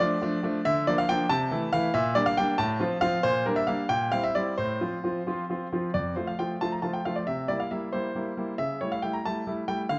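Set in a moderately reverberant recital hall with a dark production, this playful, cheerful fragment of a classical-period piano sonatina in F major moves at 92 BPM in a straight 6/8, with a clear, smooth concert grand placed up front, its deep bass and vintage character carrying a solo line from F2 to Bb5 through a descending chain of chords from Dm through Bb/D, Am/C and Gm/Bb to F/A, before the phrase starts again at 5.9 seconds on F, passes through C7 and reaches A7/C# at 8.6 seconds.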